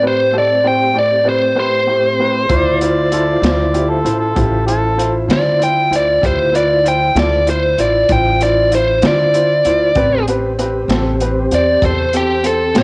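Slow blues in 12/8 at 64 BPM, soulful and smoky, this short excerpt from a longer piece has the small-room feel of a home cassette recording, with a biting, overdriven lead guitar carrying the melody up front over clear, woody upright piano and a mellow, flute-like tonewheel organ turning on a slow rotary speaker in the background. At 2.5 seconds, thumpy pizzicato upright bass on gut strings and a crunchy, saturated breakbeat kit with a tight kick enter as the chords move from Am7 to Dm7, while a gritty amplified harmonica adds a second line with tongue slaps and scooped notes until 5.1 seconds. The progression returns to Am7 at 10.0 seconds.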